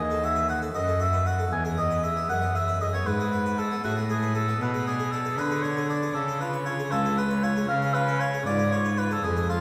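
A classical, baroque-style sonata movement with continuo, this short excerpt cut from a longer piece moves at 78 BPM in dotted quarters, in a straight 12/8 with a solemn, grave mood. A warm, distant oboe carries the melody as a solo voice, sitting up front while still sounding roomy and classical in style. Beneath it, a single bowed cello supplies the bass with a rich, reedy, gut-string tone in period style, close and up front. A close-miked, dry harpsichord fills in the accompaniment, its plucked sound full and brilliant in the Italian manner, with three sets of strings. The harmony passes from B7/D# to E, then to G#dim/B and C#, settling on C#7 near 7.7 seconds, all heard through the long church reverb of a church or concert hall.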